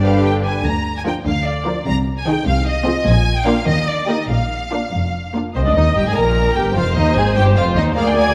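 Stormy and urgent, this brief fragment of a quick classical-period movement for string orchestra runs at 99 BPM in dotted quarters in a rubato 6/8, in Eb major, moving from G through Bb7 to Eb before a second section begins at 5.6 seconds and reaches Fm7. A focused, distant first violin section carries the melody high above a lush, smooth second violin line, while warm violas fill the accompaniment and rich, even cellos and double basses anchor the bass, every section bowed with vibrato. A moderate scoring-stage reverb gives the ensemble a full, spacious sound.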